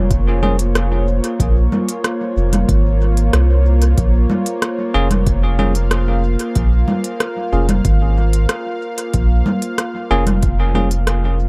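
A straight 4/4 pulse at 93 BPM carries this hazy, deep ambient dub piece in Bb minor, where a very quiet, overdriven electronic kick and a crisp, tape-toned kit of congas, hi-hat and rim click with dub echo ride over a round, soft sub bass held up front, while a detuned sawtooth pad with chorus sustains a Bbm7 chord and a bell-like, bright electric piano sounds brief echoing stabs at 0.4 seconds and again from 4.9 seconds, within a dry, echo-heavy mix.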